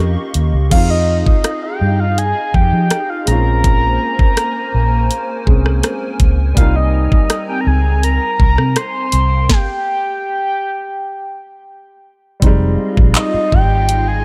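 A trap drum kit sets a straight, unhurried groove in four, its knocking kick, sharp snare, bright hats, handclaps and rim clicks sitting up front with a tape-warm character, and a stop arrives at 9.5 s. This sensual, longing contemporary R&B passage, cut from a longer piece, rests on a dark, foam-muted fingered electric bass that sounds round, amped and punchy. A warm, natural-sounding grand piano accompanies while a hollow, flute-like pad, warbling through ensemble chorus, sustains lush ninth chords. A fingerpicked nylon-string guitar with finger squeak and delay flickers in the background only at the very start, before a soft, octave-layered synth lead enters at 0.7 s, mellow and full with sub-octave body, vibrato, chorus and delay. The mix is dry, and the harmony passes through a suspended dominant before returning home at 12.4 s.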